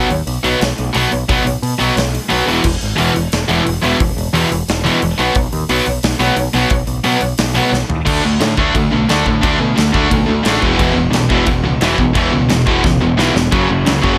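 An overdriven electric guitar riff leads this upbeat, rebellious punk rock excerpt at 177 BPM, alongside a tight, up-front distorted guitar, a growling overdriven bass and a big-room acoustic drum kit with punchy kick and bright cymbals, the drums holding a half-time feel until a fill at 7.7 seconds carries into the second section, while a crunchy, double-tracked guitar enters in the background at 13.5 seconds, the whole set in light reverb.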